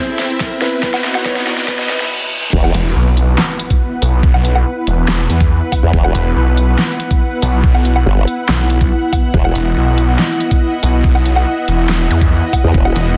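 A snarling, distorted saw bass dominates this chaotic, menacing heavy wobble dubstep excerpt, growling up front from 2.7 s in the E1 to E2 range, joined in bursts by a formant-sweep wobble bass with chorus, most notably from 5.8 to 9.5 s. It opens with a build-up at 141 BPM in a half-time 4/4 feel: a soft, felt-muted upright piano carries a mellow, intimate melody with dub echo for the first 2.1 seconds, over a drum fill, a riser and a filter sweep, capped by a reverse cymbal. The drop lands at 2.5 s on an Esus2 chord, marked by an impact, after the build moves from C to B. Throughout, a lush supersaw pad with sidechain pumping and a low-pass filter sits in the background beside an ethereal, airy pad bathed in ensemble chorus and built-in reverb, while the effects layer, which includes a zap, returns briefly near 12.1 s. The overdriven dubstep drum kit, with a huge snare, handclaps, hi-hat, woodblock and crash cymbal, plays up front alongside a knocking, layered electronic kick, both in a small room reverb. 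The master is dense and heavily limited, with light digital ambience.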